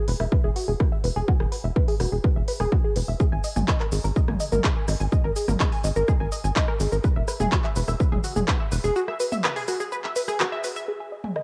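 A straight 4/4 pulse at 125 BPM drives this melancholic, hypnotic melodic techno excerpt, cut from a longer piece and slightly sharp of standard tuning. A layered techno kit of handclaps, smooth hats, rim click, shaker and toms enters at 0.1 seconds and carries on to the end, joined by a heavy, tape-warm electronic kick that sits up front from 0.3 to 8.6 seconds. Underneath, a punchy sequencer bass built from sawtooth and square waves plucks low notes with a fast, decaying attack and pumps with sidechain compression until 8.9 seconds. On top, a detuned sequenced synth of sawtooth and pulse waves spins driving arpeggios through chorus, tape echo and a cassette-worn grain, with a filter sweep running across it as the harmony moves from E to G#sus2 and back. A break from 9.0 to 10.9 seconds thins the arrangement before landing on G#5, all framed by light digital ambience and the soft haze of a home cassette recording.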